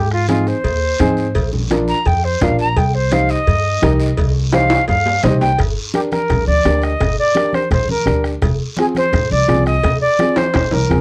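A straight 4/4 cumbia pulse at 170 BPM drives this danceable Latin fragment, with a soft-beater bombo in the background beneath ringing congas, vintage metal-shell cowbell and timbales, and a raspy guiro, set in a dry, close 1970s-style studio sound with light reverb. An airy silver concert flute with a crisp attack carries the melody up front, soloing through the opening 5.6 seconds, while a thumpy pizzicato upright bass on gut strings and a dark, mellow upright piano with short sustain move through chords from Ab through Bb and Cm to Gm and Fm. Drum fills arrive at 4.5 and 10.4 seconds.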